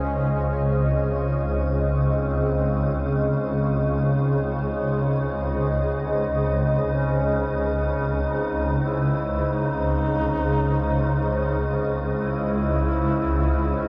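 Dark and cavernous, this free-time dark ambient drone in C# harmonic minor sets a mellow, folk-style duduk melody with vibrato, fading in under shimmer reverb and tape echo, over a deep, moody sawtooth pad with chorus and a moving notch holding sustained chords, while a swarming, tense, granular detuned drone sits up front in a huge, wet reverb across this 13.9-second excerpt from a longer piece.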